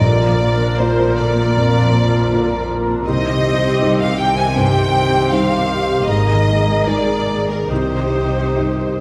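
Awash in wet scoring-stage reverb with lossy compression artefacts, this moving, longing cinematic film score in C minor unfolds rubato at around 68-81 BPM over Bb, Cm and Absus2 harmonies, as a rich violin section carries the melody with vibrato while a clear second violin section, a dark cor anglais, a shadowy clarinet and an airy flute group weave secondary lines, a felt-muted upright piano with audible action noise, a warm viola section and a ringing thumb-plucked concert harp supply accompaniment and arpeggios, a distant, very quiet French horn section sustains chords, and close, focused cello and double bass sections anchor the bass throughout the 9 seconds.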